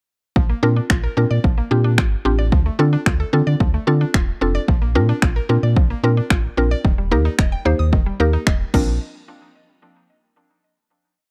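Upbeat and carefree, this short dance-pop piece rides a punchy, overdriven four-on-the-floor beat from a layered electronic pop kit with crash cymbal and finger snaps, under a deep sine-and-triangle sub bass with octave jumps and slides that pumps to the sidechain. Two woody, FM-toned mallet-like plucks sit up front with chorus: one plays syncopated close-voiced chord stabs, while the other, brighter and ring-modulated, spins rising sixteenth-note arpeggios through tape echo over a Bbadd9, Dm7 and Eb progression. The dry, close 1970s-style studio sound carries the verse until a final hit at 9.0 seconds.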